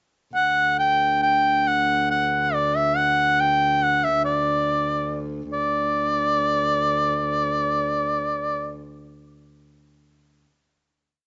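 A home cassette recording with a dulled top end and a short, moderate booth ambience frames this brief, festive medieval dance in D major, tuned to A4 = 439 Hz. A close-miked shawm, edgy and up front, carries a modal folk melody with ornaments and vibrato between D5 and G5, set in its own plate reverb. Beneath it a single bowed, fretted viola da gamba holds a low D2 drone, its rich, ringing tone shaped by a soft attack, an airy bow and light vibrato, sitting intimately behind the shawm. Both parts play together from 0.3 s, and the free-time pulse speeds up as the rustic tune unfolds. At 5.5 s the melody settles onto a final held note that lasts until 7.9 s.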